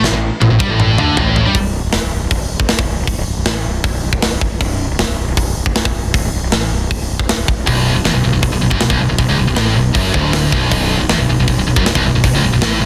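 An aggressive, relentless heavy metal cut at 157 BPM in B minor opens with a drum fill from a tight, mid-forward acoustic kit, its kick and snare softly clipped, under a scooped, bright high-gain guitar and a sludgy overdriven guitar further back that play an A5 riff until 1.5 seconds and return at 7.7 seconds on B5, while a growly fuzz fingered bass holds the low end throughout, all inside a big studio room and a dense, heavily limited modern master.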